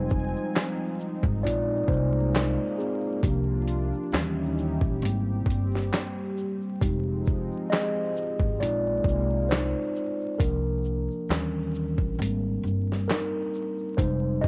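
A mellow tine electric piano leads this reflective, hazy lo-fi hip hop excerpt at 67 BPM in F dorian, sitting up front with cassette-tape softening and a low-pass filter as it moves through Fm7, Bb9sus4, C9sus4, Eb7b9 and Abmaj9 over a swung 16th-note feel. Beneath it, a woody pizzicato upright bass and a compressed, pitched-down sampler-style kit with a thumpy kick, handclaps, hi-hat, shaker and snare sit close, while a detuned, chorused analog pad holds slow-attack chords until 10.4 s. A grainy tube shaker stays in the background, and the dry home-cassette recording carries a layer of vinyl crackle.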